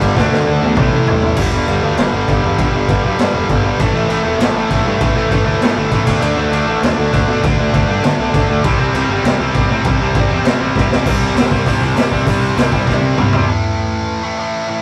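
This rowdy, upbeat punk rock excerpt at 198 BPM features a raw garage drum kit, boomy in the kick and gritty with a rolled-off top, dropping into a half-time feel from 1.4 to 11.1 seconds and punctuated by quick fills. Two bright, distorted picked guitars drive the riff, one compressed and up front, while a growly fuzz bass adds overdriven weight underneath, all in a rough rehearsal-room sound with light reverb. The tight guitar carries on alone from 13.5 seconds as the piece returns to its opening material.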